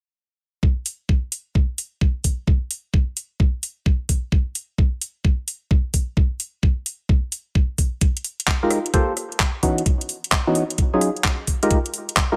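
A light reverb gives this moody, late-night UK garage fragment, cut from a longer piece, a gentle sense of space around its up-front parts. It moves at 130 BPM in 4/4 with a two-step feel, its sixteenths swung at 66%. A knocking electronic kick enters at 0.6 seconds, joined at 0.9 seconds by a layered, tape-warm garage kit of handclaps, rim clicks and metallic hi-hats, and the two drum parts carry the groove alone at first. At 8.6 seconds a hollow, percussive organ-like stab arrives, mellow, fast in attack and decaying, built from sine and triangle tones with a noise layer and touched with subtle chorus and delay. Its chords move through Fm11, Gm11, Dbm11 and Ebm11 before returning to Fm11, adding a dusky harmonic colour over the beat.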